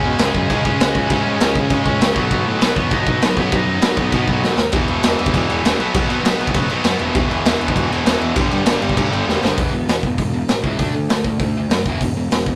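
Two bright, overdriven electric guitars and a tight, very quiet double-tracked distorted guitar open this rowdy, upbeat punk rock excerpt at 0.0 s, riffing over a growly fuzz-picked electric bass in E major at 198 BPM in straight 4/4. A bluesy lead guitar with distortion and delay sits in the background with a melody that ends at 4.4 s. The raw garage drum kit is up front, with a boomy kick, medium-tuned snare, dark cymbals, hi-hat and crash, sounding saturated and gritty with a rolled-off top in a pumping small room, and short drum fills mark each change of section. The tight guitar and one of the riff guitars stop at 10.1 s, leaving the other guitar, bass and drums to carry the closing stretch over chords moving between E5 and D5. The whole take has the rough feel of a rehearsal-room recording, with tube saturation and light reverb.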